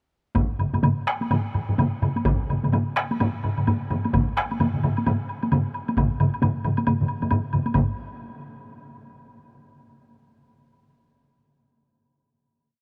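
Bathed in light reverb, this short, driving and ceremonial Japanese taiko ensemble piece swings and speeds up throughout: two solo taiko drums struck with heavy sticks repeat a compressed, saturated pattern, one of them up front, while two taiko ensembles play phrases, one with hard sticks placed forward and the other in a small room, and a woody, close and dry woodblock repeats its own pattern before a final hit at 7.7 seconds.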